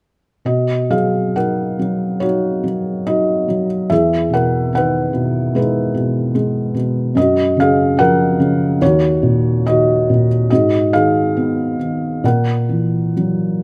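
A felt-muted upright piano plays alone from 0.5 to 13.6 seconds in this peaceful, lyrical classical fragment at 72 BPM in 4/4, its rubato beats stretching unevenly through Bmaj9, Emaj9, F#maj9, D#m7 and G#m7 before settling on F#7/A#, with a soft, dark, intimate tone from the thick felt, audible action noise, and close, detailed, nearly dry miking that places it up front, tuned to A4 = 444 Hz.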